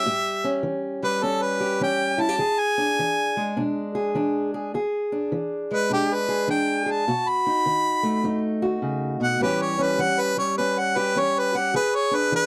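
A loping swung 4/4 groove carries this soulful, swaggering acoustic country blues duo, cut from a longer piece. A clear harmonica takes the melody as a solo across the whole 12.5 seconds, up front with light vibrato, soft attacks and scooped notes in a jazz-tinged style, while a boxy, parlour-sized fingerpicked steel-string guitar sits close beside it, moving through dominant-seventh changes from A7 to E7 and B7. The sound is dry and intimate, like a close 1970s studio session.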